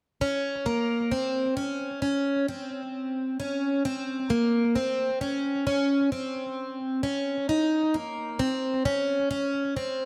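A picked, plugged-in twelve-string acoustic guitar enters at 0.2 seconds and carries the excerpt alone until 10.1 seconds, its octave-doubled strings giving a shimmering dreadnought tone placed up front. This is hazy, melancholic dream pop in Bb minor at a slow 66 BPM in straight 4/4, cut from a longer piece. The guitar stays within a narrow span from Bb3 to Eb4, and a lush chorus and analog delay thicken and blur each picked phrase. A moderate spring reverb surrounds it, and the echo-heavy mix lends the passage a drifting, suspended quality. The tuning sits slightly high, at A4 = 442 Hz.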